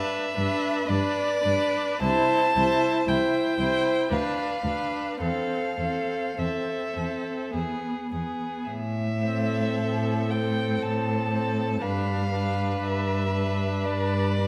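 Two expressive bowed violins, the up-front lead singing with vibrato and portamento above a second line, open this elegiac, solemn fragment of a slow romantic string quartet movement in A minor together with a focused viola accompaniment. From 0.4 seconds a rich, smooth-topped cello bass joins them, all moving in a rubato 3/4 at around 50-61 BPM through a recital hall's reverberant bloom.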